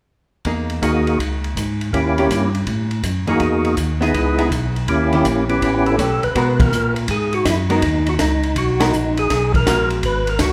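This soul jazz organ trio excerpt opens at 0.4 seconds with a tonewheel organ carrying the bass line and a compact cocktail drum kit of hi-hat, kick, ride and snare. The kit sounds acoustic and dry, with dark cymbals, a high-tuned snare and a punchy kick. At 163 BPM in 4/4 with a swung eighth-note feel in G# minor, the mood is smoky and late-night. A hollow-body archtop guitar, miked and amplified, adds dark, clean, picked, compressed accompaniment, while a second tonewheel organ takes the melody from 0.8 seconds, lightly overdriven with third-harmonic percussion, key click, chorus vibrato and a slow rotary speaker, sitting up front as the loudest part. The bass organ is fat and clean, with its own key click, chorus vibrato and slow rotary swirl. Harmonies such as Emaj9#11, D#7b9 and A9 give way to G#m9 as a new section begins around 6.4 seconds, and band accents land within it, all heard in a moderate recital hall reverb.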